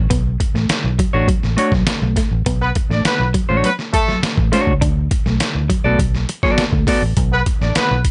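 A bright, punchy horn section stands out in this sly, cool funk excerpt in B minor at 102 BPM, entering at 2.6 seconds with a tight, up-front second line. Underneath, a vintage muted fingered bass sets a dark, round, foam-muted foundation in a low register, while a gritty, compressed trip hop sampler-style drum kit, pitched down with a thumpy kick and a medium-tuned snare, sits up front with its hi-hat. A clean, dark picked electric guitar carries the riff with a tremolo effect, and a second clean guitar, compressed and warm in tone, adds accompaniment from 1.1 seconds. The harmony moves from Bm9 to D6 and settles on Bm7. The sound is dry and close, with the top end rolled off for a dusky, vintage feel.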